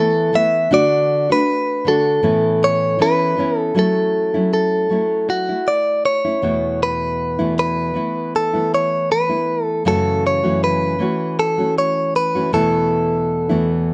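A moderate studio reverb gives this short acoustic pop excerpt a natural sense of space, with both guitars sitting up front. The mood is heartfelt and carefree, carried by a lightly swung sixteenth-note feel in 4/4. A fingerpicked nylon-string guitar provides the accompaniment throughout, its full-bodied, deep classical tone anchoring the low and middle register. Above it, a clean, picked electric guitar, recorded direct and compressed, carries the melody with a bright edge, set in plate reverb. The harmony moves from Esus4 through D and Aadd9 before shifting at 3.8 seconds into a longer passage that alternates between F#m7 and Esus4.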